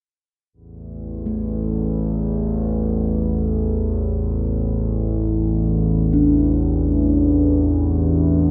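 A wet plate reverb lends this short excerpt of free-time world meditation music a haunting, meditative air, tuned slightly low to A4 = 437 Hz. An up-front analog drone enters at 0.8 seconds, its sawtooth and pulse-wave tones warbling and evolving under chorus with a slow attack and long release. From 1.3 seconds a bronze singing bowl, struck with a felt mallet, adds a soft, metallic ring with slow beating, heard in a boxy small room.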